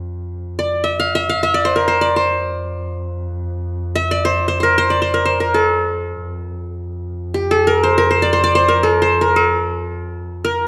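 A bright, plectrum-plucked qanun sits up front, its triple strings carrying a melody between G4 and F5 from 0.6 seconds onward. This is an Arabic maqam ensemble piece in F maqam rast, played in free time and tuned to A4 = 445 Hz, with a festive yet stately mood. Beneath it, a single bowed double bass holds a drone on F2 from the start. The bass is dark and woody, played sul tasto with vibrato and a smooth top, and it sits well below the qanun in level. A moderate recital hall reverb gives both instruments a sense of space. The passage is cut from a longer piece and runs to 10.7 seconds as one continuous section.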